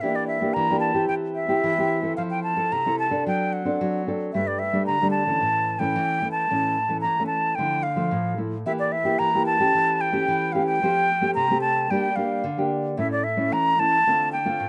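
A straight samba feel at 111 BPM in 4/4 carries this festive, sunny D minor passage, cut from a longer piece. Up front, an airy concert flute sings the melody from D5 to Bb5 with tongued notes, vibrato and an unsteady quality, heard close-miked. Beside it, a classical nylon-string guitar with fresh strings is thumb-plucked from G2 to A4 through chords such as Em7b5, Fmaj7 and A before settling on Dm7 at 14.1 seconds, all in a dry, open-air sound.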